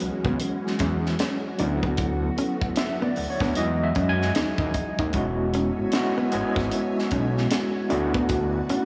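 An overdriven tine electric piano leads this relaxed, soulful neo-soul and R&B excerpt, its barky, gritty tone pushed through a combo amp with medium tremolo and slapback echo, taking a solo through the first 5.1 seconds before settling back into accompaniment. Underneath, a fat analog bass sits up front with a thick, detuned sawtooth sound, a filter sweep and a fast attack, holding the low end until 8.6 seconds. A tight funk drum kit with a high-tuned snare and a tight kick plays hi-hat, kick and snare in a small-room acoustic sound at 76 BPM in 4/4, with a swung sixteenth-note feel. In the background, a silky vintage string machine holds slow-attack chords colored by phaser and ensemble chorus, while a dark, clean hollow-body jazz guitar adds a compressed, picked second line through analog delay. The harmony in E mixolydian moves between E69, D6 and Emaj9, and the whole mix is bathed in a lush hall reverb that gives it a big arena sound.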